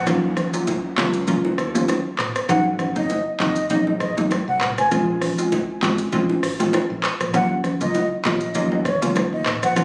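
A breathy, vibrato-laced concert flute with tape echo opens this sultry, mellow afrobeats excerpt at 99 BPM in Eb dorian, over a bright, punchy fingered electric bass and a very quiet electronic downlifter that ends by 2.5 s, while a hollow, detuned square-wave pluck with chorus, a produced afro-pop kit with deep kick, metallic hats, handclaps, rim clicks, shaker and toms, and ringing, saturated congas and bongos in the background join at 0.1 s on lightly swung sixteenths through an Ebm7–Ab7–Bbm7–Ebm7 progression, the whole heard in a lush hall reverb with the compressed character of a phone recording in the room.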